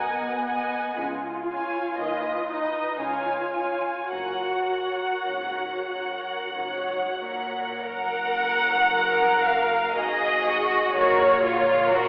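In a rubato 3/4 at a slow 43-62 BPM, this tender excerpt from a romantic movement for string orchestra in F# major sets a muted, con sordino first violin melody with soft attacks and lush vibrato up front, a second violin line beneath it, and close, veiled violas in accompaniment. Distant cellos and double basses, the basses with only light vibrato, carry the bass in the background, all five sections bowing together from 0.0 to 12.1 seconds. A long concert-hall reverb places the listener further back in the room, and a telephone-like filtering narrows the sound.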